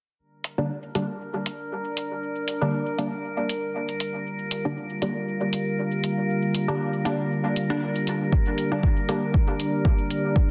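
Dub techno in G minor at 118 BPM with a light swing, cavernous and meditative, resting on a single G minor chord in this brief cut from a longer piece. A moody, detuned sawtooth pad with a sub octave holds sustained chords from 0.2 s, pumping under sidechain with chorus, while a glassy sine texture of drifting overtones hovers on one high note in its own reverb and a muted, filter-plucked dub chord stab pulses through phaser and dub echo. Metallic, tape-warm electronic hi-hats sit low-passed up front in a moderate digital room, and a punchy analog kick only arrives at 8.3 s, all inside a dense, heavily limited master.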